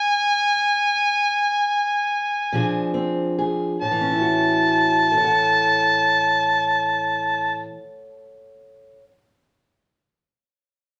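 An overdriven, amplified harmonica opens alone with a punchy, gritty jazz-style solo full of tongue slaps, scooped notes and light vibrato, bathed in plate reverb, as this swaggering acoustic country blues fragment in a slow 12/8 slows down over its first few seconds. At 2.5 s a dark, boxy fingerpicked parlour steel-string guitar joins on a Bb9 chord before settling onto A6. The harmonica drops out at 7.6 s, leaving the guitar to carry on until the 9.1 s cut, both parts up front within a wet studio ambience heard from further back in the room.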